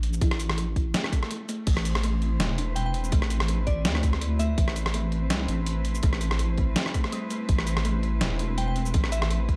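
A dark, tense half-time drum and bass excerpt with a dry, warm production, built on a deep, wobbling bass with chorus and a hard-clipped electronic kick that enters at 0.2 s beneath a gritty, compressed sampler-style kit of snare, hi-hat, rim click, shaker and crash. A woody kalimba plucks tape-echoed arpeggios in the background while a small electronic swell rises at 1.2 s, and an earthy, nasal cello section follows at 1.7 s with sustained, sidechain-pumped chords over a very quiet pulsing gated texture. A crystalline FM synth bell with chorus and tape echo sings a brief high melody from 2.8 s and returns near the close.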